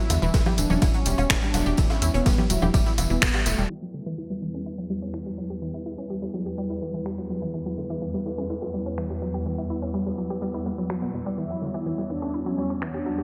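A brassy, chorused synth melody and a moody, detuned analog pad open this dark, driving melodic techno excerpt in E dorian at 125 BPM, joined at once by a round, bright analog pluck arpeggio, a tight sawtooth sequencer bass, an overdriven deep house kit of congas, finger snaps, hi-hat, ride and woodblock, a distant, roomy big-band kit's hi-hat and snare, a jingly tambourine and a punchy, tape-warm electronic kick, before the kick, bass and tambourine fall away by 3.7 seconds and a swarming, tense granular drone enters on E2 at 4.3 seconds while the pluck moves through a filter sweep and the brass returns at 11.4 seconds, the sidechain-pumped synths, with delay on the brass and pluck, sitting in a lush hall reverb with a bright 1980s-style digital sheen.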